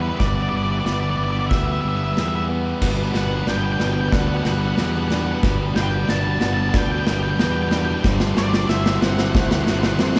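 A concert-hall reverb gives this euphoric, hopeful post-rock excerpt in G major a spacious, churchlike bloom as it builds at 92 BPM, moving from Gmaj7 to D9/G. A growly fuzz bass sits up front, with a punchy acoustic drum kit playing a fill from 0.2 seconds, while a clean electric guitar picks arpeggios and a dark, octave-fuzz lead guitar carries the melody. A bright, tight distorted guitar riff sits in the background, joined at 2.8 seconds by a hollow-bodied overdriven semi-hollow guitar riff, and a lush, very quiet symphonic string section holds sustained chords with vibrato underneath.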